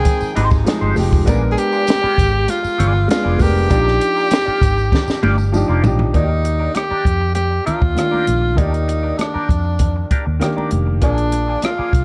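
A dark, lightly reverberant studio sound frames this smooth, silky 1970s-style soul excerpt at 99 BPM, where a breathy, up-front tenor saxophone with slapback echo carries the melody over vintage grand piano, a round, foam-muted electric bass, a clean picked guitar riff through wah and a compact cocktail drum kit with punchy kick and high-tuned snare, while tight horn stabs sound only in the first 0.9 seconds, hard-handed congas sit in the background, a jingly tambourine drops out at 6.0 seconds, and a drum fill from 4.9 seconds leads into a passage that opens on Ebmaj7.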